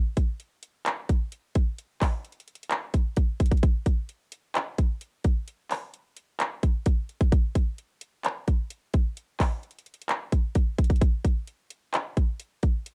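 The recording sounds dark and dry, with little reverb, and it is a short cut from a longer piece. It is hip hop in 4/4 with a half-time feel, and its mood is both wistful and triumphant. An electronic trap drum kit carries the whole track, entering at 0.2 seconds and playing through to 12.9 seconds. The kit combines handclaps, hi-hat and kick drum, with a hard-clipped kick and metallic hats sitting up front in the mix. The opening passage gives way to a second section at 3.6 seconds.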